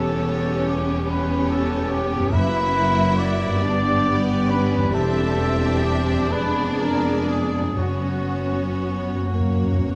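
Opening with strings, horns, trumpets and harp together, this melancholic, solemn slow romantic movement in a rubato 6/8 at 39-50 BPM sets a lush, vibrato-laden violin melody over a soft-attack, expressive second violin line, smooth viola accompaniment, focused cellos and even, bowed double basses on the bass, mellow sustained French horn chords, distant, roomy trumpet stabs placed up front and very quiet, ringing thumb-plucked harp arpeggios, while articulate hard-mallet timpani enter at 2.3 seconds and return at 7.8 seconds, closing with a fill from 9.3 seconds, inside a moderate concert hall reverb.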